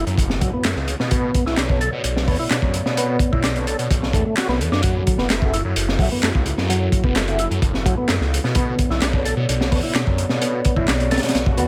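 A gritty, saturated breakbeat kit with a punchy kick and high-tuned snare sits up front in a small room, driving this swaggering, raw breaks cut at 129 BPM over F#m7 and Bm9 chords. A swirling, thick detuned saw bass with phaser and a lightly overdriven, percussive tonewheel organ riff, turning on a slow rotary speaker and trailing dub echo, carry the groove, while tape-flavoured electronic handclaps join at 0.6 seconds. A deep, nasal analog pad pumps softly in the background, a distant, very quiet dark brass ensemble adds stabs from 1.7 to 9.8 seconds, and an electronic swell rises at 11.5 seconds.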